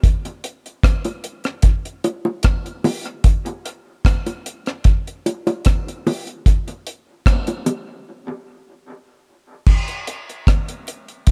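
A deep, dark reggae drum kit leads this meditative, heavy fragment from a longer piece, its tight kick, rim clicks, hi-hat and crash sitting dry and up front in a barely reverberant space. Round, low-tuned bongos enter at 1.1 seconds with soft hands, close and filtered thin, trailing dub echo behind them. A filter sweep on the drums begins at 6.5 seconds, and a break arrives at 8.1 seconds before the groove moves into a short new section.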